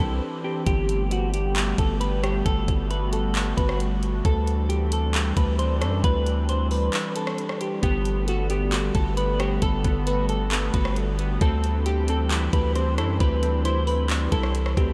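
A dark, clean semi-hollow electric guitar melody with analog chorus and delay opens this floating, blissful stretch of atmospheric cloud-rap over a warbly, nostalgic tape-like pad pumping against the beat, a deep sine 808-style bass and glassy digital key arpeggios. The smooth, electronic R&B drum kit enters at 0.7 seconds in a half-time feel, with a knocking kick, hi-hats, rim clicks and handclaps sitting up front beside the bass, while the bright, vintage keys drop away and return in the background at 7.8 seconds. Brief breaks and sustained ninth chords float in a dreamy mix soaked in huge ambient reverb.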